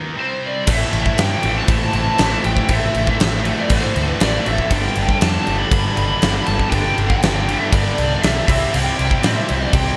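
A huge arena drum kit with a punchy kick, fat snare and bright cymbals arrives at 0.7 s alongside a round, dark, foam-muted fingered bass, driving this aggressive hard rock piece at 119 BPM in A minor, as a double-tracked high-gain guitar riff and a sludgier overdriven riff in the background churn over Am, G and C beneath a picked lead guitar through a small cranked amp with overdrive and lush chorus, while a very quiet, warbling, detuned sawtooth pad sustains underneath in a bright 1980s-style digital mix with light reverb.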